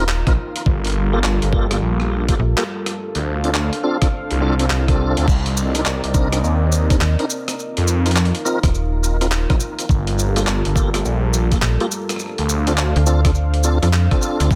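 A swung 104 BPM glitch hop groove in 4/4 is driven by a gritty, thumpy electronic kick and a compressed boom bap kit of handclaps, hi-hat, rim click and crash, both re-recorded in a large room, while an up-front phased, detuned saw bass swirls alongside a snappy FM slap bass with a metallic attack that drops out at 2.5 seconds and returns at 7.0. Over a moody cycle of F7sus4, Gm9, Dm7 and Cm9, a dark detuned analog pad sustains chords with chorus and sidechain pumping, and a tonewheel organ plays stabs with key click, fast rotary speaker and tape echo. Grainy, close maracas join at 5.3 seconds in this funky, echo-heavy excerpt cut from a longer piece.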